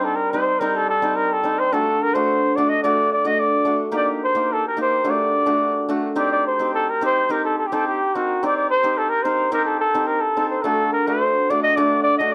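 Heard in a moderate studio room with a 0.7-second reverb, this soulful, bittersweet klezmer excerpt moves in a straight 2/4 at 107 BPM, tuned to A4 = 437 Hz. Up front, a mellow, vintage-toned cornet carries the melody as a jazz-style solo, with light vibrato and soft attacks, ranging from F#4 to Eb5. Beside it, an acoustic hammered dulcimer, shimmering and ringing, plays the accompaniment through chords of Cm, D and Eb, and the same passage comes around twice across the 12.3 seconds.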